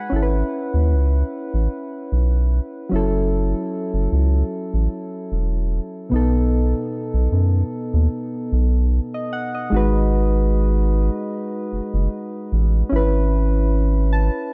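Longing and sensual, this contemporary R&B clip moves at 75 BPM with a lightly swung sixteenth-note feel, pairing soft, full-bodied electric-piano-like synth keys, given a chorus shimmer and a filter sweep, with a deep, nasal analog bass up front in digital ambience, through chords from C#m7/G# to F#m7, B7 and G#m7 before a closing keys fill at 13.7 seconds.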